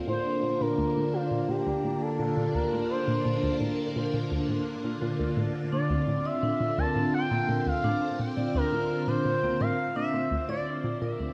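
A straight 4/4 pulse carries this cosmic, expansive stretch of sequencer-driven ambient space music, where a swirling, vintage phased string machine holds bright sustained chords up front beside a smooth, expressive portamento lead with vibrato and delay, while a round analog pluck riff sits low, a resonant, bubbling stepped-filter texture hovers in the background, and a metallic, ringing vibraphone adds arpeggios from 5.7 seconds, all set in a dark production with plate reverb before a fade-out from 9.5 seconds.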